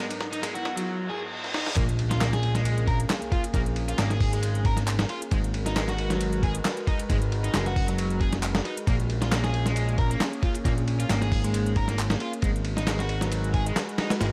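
Swaggering and energetic, this breakbeat clip at 135 BPM in Bb phrygian opens with a short build-up, where a background riser and reverse cymbal lead into an impact as the drop lands at 1.8 s. The drop brings in a fat, detuned analog bass with tube saturation, sitting up front alongside gritty, compressed sampler-style drums with a thumpy kick that have been playing since the opening, layered with an electronic garage kit of handclaps and metallic hats. A double-tracked overdriven guitar plays a crunchy picked riff through digital delay, while a warbling, nostalgic lo-fi pad holds sustained Abm9 and Bbm7 chords with chorus, 12-bit sampler grit and sidechain pumping, all over a bed of vinyl crackle in a dry room.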